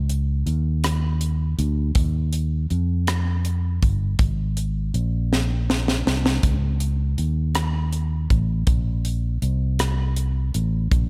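A slow, straight 6/8 groove at 54 BPM (dotted quarters) drives this hopeful, soulful gospel passage in Db major, set in light reverb. A tight funk drum kit, dry and airy with a high-tuned snare, punchy kick, hi-hat and rim clicks, sits up front beside a dark, round, amped fingered electric bass moving between G1 and F2. The drums break into a fill from 5.3 to 6.4 seconds before the groove resumes until the cut at 11.1 seconds.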